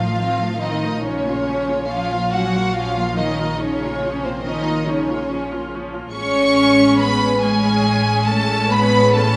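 A generous, reverberant hall sound surrounds this slow, solemn string orchestra passage, cut from a longer romantic movement in 12/8 at 47 BPM, played with free rubato and tuned slightly high. The violins carry the yearning melody up front with a dark, intimate tone, smooth on top and touched with light vibrato. A second violin section floats beneath with a pure, symphonic quality, while the violas fill in the accompaniment with a rich, vibrato-laden voice. Cellos and double basses share the bass line, the cellos close and warm and the basses floating and pure, and every section bows sul tasto with a soft attack for a hushed, veiled blend. The harmony moves from F7 over A to B-flat minor at 1.0 seconds, holding there until an A major seventh arrives at 6.2 seconds, with the full ensemble sounding together throughout the 9.4 seconds.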